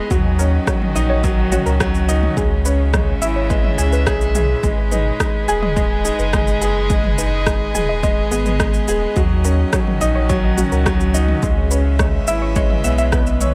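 Melancholic and intimate, this piano and strings electronica excerpt moves at 106 BPM in 4/4 with a straight feel in G# minor, cycling through D#m7, C#m7 and G#m. An up-front, smooth vintage grand piano riff with digital delay sits over a dark, close string quartet holding sustained chords with light vibrato and an airy bow, while a warbling, dusty lo-fi pluck plays chorused, delayed arpeggios in the background. A round, deep sub bass pumps underneath, and a deep house kit of rim click, shaker and toms joins a punchy, overdriven electronic kick, both drum parts set in a small room, with a digital ambience around everything.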